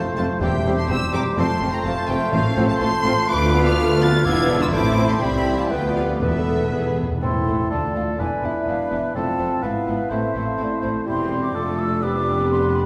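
Heard from further back in a reverberant concert hall, this spirited, graceful classical-period movement for symphony orchestra moves quickly in 2/4 at 125 BPM with a rubato feel, starting in F major before turning to A minor from 3.3 s. A rich, focused violin section carries the melody, with airy flute, warm oboe and a very quiet, distant clarinet weaving second lines alongside a softer, expressive second violin section, while bassoon and a smooth-topped viola section fill the accompaniment. Mellow French horns hold sustained chords in the background over bowed cellos and a clear, intense double bass section, and hard-mallet timpani punctuate the passage until a fill ending at 7.2 s.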